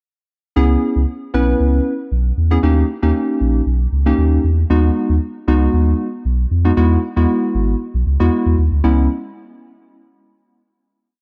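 Pop in C# minor at 116 BPM, tuned to A4 = 435 Hz, bittersweet and driving, where detuned analog keys blending square and sawtooth tones, with chorus and a filter sweep, play syncopated, close-voiced chords over a round, deep sine sub bass carrying a syncopated dance-pop line with chromatic approach notes, both up front in light digital reverb, moving through C#m7, D#7, G#m7 and Eadd9 before settling on a final C#m7 at 8.8 seconds.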